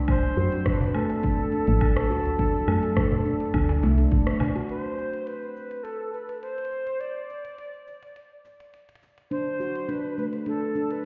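Heard muffled as if through a wall, in stone-room and lush hall reverb, this earthy organic downtempo piece at 104 BPM in D mixolydian sets a bright, pure cedar flute with chiff, vibrato and tape echo over ringing, meditative handpan arpeggios, a round, dark FM bass with sidechain pumping that stops at 4.1 seconds, a deep layered electronic kick, a saturated cajon, crisp hats, rim clicks, shaker and woodblock from an electronic kit, and a very quiet glassy texture of drifting overtones, with a band accent at 4.3 seconds before the handpan drops out at 4.7 seconds and later returns briefly.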